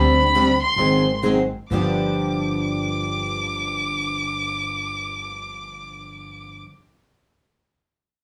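Playful and lively, this short cut from a longer acoustic string swing piece has a jazz manouche bounce, with a lilting swung eighth-note feel in four. A bowed violin carries the melody up front, singing high with vibrato, expressive portamento and a smooth top, its tone warm and from a single player. Two picked steel-string acoustic guitars supply the accompaniment: one mellow, concert-sized and fuller in level, the other a brighter, boxier parlour guitar with fresh strings and audible finger squeak sitting further back. A pizzicato upright bass with gut strings adds a woody, dark, thumpy low end. The opening passage slows down through its first 1.7 seconds over D7sus4 and Ab7 before settling onto G7 for the next stretch. It all sounds like a band playing live together in a small room, with a fairly wet studio ambience around the players.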